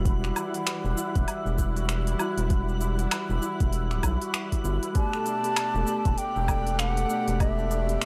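This excerpt of organic downtempo opens on a sustained Emadd9 chord in E minor, with muted, felt-like synth keys, a bowed chamber string section with vibrato, a shimmering hammered santur playing arpeggios through tape echo, and a round, deep analog bass sitting up front, all sounding together from the first moment. At 98 BPM in 4/4 with a swung sixteenth-note feel, an overdriven soft electronic kick and an organic electronic kit of cabasa, finger snaps, crisp hi-hat and woodblock come in at 0.1 seconds, set in a small room. The keys carry chorus and tape echo, and they share a sidechain pumping with the strings and bass, giving the bed a breathing motion. Far in the background, a twinkling granular texture sparkles on a single high note inside its own reverb. At 5.0 seconds a breathy low ney enters with the melody, its reedy, end-blown tone and vibrato lending a mystical, meditative focus. 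The whole recording has a dry, gritty hardware character with transformer saturation and a digital ambience.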